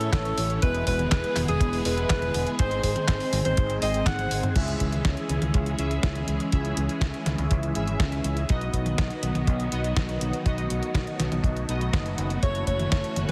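Heavily compressed, radio-style sound with a touch of small-room reverb opens this bittersweet, danceable italo disco excerpt, moving at 122 BPM in a straight 4/4 and set in C# minor. A dry, dark, tightly rolled-off acoustic kick sits loudest in the mix, while an overdriven, detuned 8-bit drum machine sits up front with a fat snare, handclaps, hi-hat, toms and crash cymbal, re-recorded in a small room. A fingered electric bass with tube saturation anchors the low end, as a swirling, warbling string machine spreads bright, slow-attack chords through ensemble chorus, phaser and vintage 12-bit grit. Bold, brassy analog synth stabs with ring modulation and a filter sweep cut through with chorus and delay, moving from A, E and G# into C#m, B and F#m7. A clear, punchy, close-miked alto saxophone leads with scooped pop-style notes and tape echo. It drops out at 4.5 seconds, during a drum fill that begins at 4.1 seconds, and returns at 12.4 seconds.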